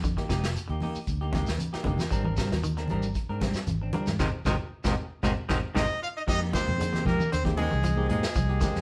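This afrobeat groove at 116 BPM in F dorian feels hypnotic and defiant, moving in a straight 4/4 over Fm11 and Abmaj9#11 chords. From the start, a picked semi-hollow electric guitar plays bright arpeggios with tremolo, while a second fingered hollow-body guitar adds dark, clean stabs. Beneath them sit a round, amped fingered bass and a vintage brush kit with a punchy kick, a medium-tuned snare and a rolled-off top. A grainy, close shekere and low-tuned, thin-skinned congas tucked into the background add to the pulse. During a band accent and a drum fill, a brilliant trumpet takes the solo melody at 5.8 seconds with light vibrato and scooped notes, shadowed by a raspy, gritty tenor saxophone line lower in the mix. A mellow tine electric piano joins at 6.8 seconds, and the whole band sounds live in one room with a wet studio reverb.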